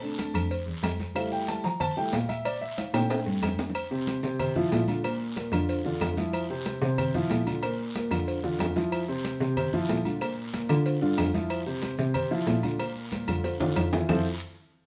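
Salsa at a brisk pace, this sunny, festive excerpt from a longer piece opens with an upright piano solo over the first 3.8 seconds, its chords moving between Bbmaj7 and Fmaj7. Up front and intimate, the piano has a boxy, woody character with long sustain and audible action noise. Beneath it, a bowed cello takes the bass role, its smooth, even tone colored by vibrato and set at a distance. The percussion fills in around them: thick-skinned congas played with hard hands, round low-tuned bongos with cowbell, ringing metal-shelled timbales with agogo bells, a raspy guiro, and compressed, saturated claves. Drum fills mark the turns at 2.8, 8.4 and 13.1 seconds, as the harmony settles into an alternation of F5 and Bb. A moderate studio reverb gives the ensemble a sense of a large room.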